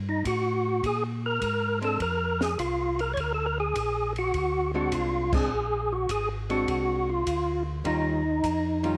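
A fat, lightly overdriven tonewheel organ carries the melody up front in this greasy, bluesy soul jazz organ trio, its percussive third harmonic attack, key click and chorus vibrato turning through a slow rotary speaker. Beneath it, a second tonewheel organ holds the bass line with a mellow, round, clean tone, also through a slow rotary and sitting up front in the mix. A compact cocktail drum kit sounds acoustic and dry, with dark cymbals, a high-tuned snare and a punchy kick, swinging the eighth notes at 103 BPM in 4/4. An amplified hollow-body archtop guitar enters at 1.8 seconds with clean, picked accompaniment, and the whole band hits an accent together at 5.2 seconds. The harmony moves from Eb to Bb9 and settles on Eb9 near the close, all wrapped in light reverb and studio ambience in this short excerpt cut from a longer piece.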